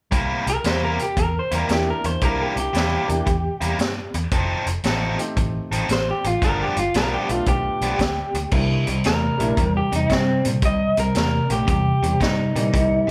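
Recorded live in one room with light reverb, this soulful, gritty electric blues shuffle sets a bright, overdriven guitar riff over dark, foam-muted fingered bass and a vintage drum kit with a punchy kick and high-tuned snare, while a slightly broken-up, lo-fi guitar carries the melody from 0.5 seconds and a clear concert grand piano adds accompaniment from 1.7 seconds as the harmony moves from C7 through F7 and G7 and back to C7.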